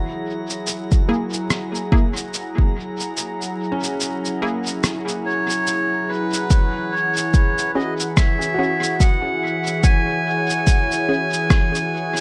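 A swung 4/4 groove of muffled, pitched-down shaker and rim clicks with dub echo sits under an overdriven, deep electronic kick that sits up front but drops away from 3.2 to 6.5 seconds, giving this hazy, spacious ambient dub passage room to breathe. A warbling, detuned tape-like pad holds sustained chords with chorus and reverb, while filtered dub chord stabs pluck through echo, a soft felt-muted upright piano murmurs arpeggios through analog delay in the background, and a glassy harmonics texture drifts high above until 6.5 seconds. From 5.3 seconds a reedy, breathy melodica carries the melody up front, its nasal tone trailing analog delay across an echo-heavy mix cut from a longer piece.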